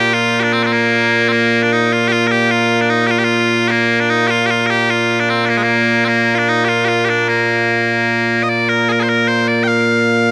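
Solo bagpipes ring out from the start in a proud, ceremonial Scottish pipe tune in 6/8, moving at a straight 101 beats per minute in Bb major. The piercing, continuous tone sits up front and spans from Bb2 up to G5, carried by a huge, ambient reverb that hangs for seconds. At 8.5 seconds the tune moves into a new section before this fragment of a longer piece cuts off at 10.3 seconds.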